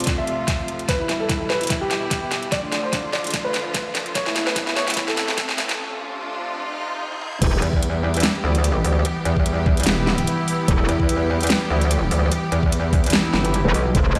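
Swung, half-time 147 BPM rhythm from a knocking, tape-warmed electronic kick and an up-front dubstep kit with a huge snare and metallic hats drives this chaotic, heavy wobble dubstep excerpt in E phrygian, where a short-sustain grand piano melody through low-pass filter and digital delay and clear, smooth symphonic strings pumping under sidechain open a build-up with a background riser, until at 7.4 s the drop hits with saturated, aggressive FM wobble bass layers thickened by chorus and overdrive, joined from 8.1 s by distant, mellow brass stabs, all set in a lush 2.0-second hall reverb through to the cut at 14.2 s.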